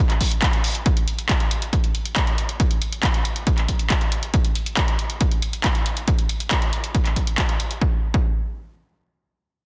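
Driving and bittersweet, this short cut from an uplifting trance piece moves in a straight 4/4 pulse built entirely from drums. An analog drum machine carrying handclaps and hi-hat opens at 0.1 seconds, joined at 0.2 seconds by a punchy electronic kick sitting up front, both re-recorded in a large room for a roomy, physical edge. The drum machine stops at 7.8 seconds as a new section begins, leaving the kick to carry on until 8.3 seconds within a dense, heavily limited modern master touched with light reverb.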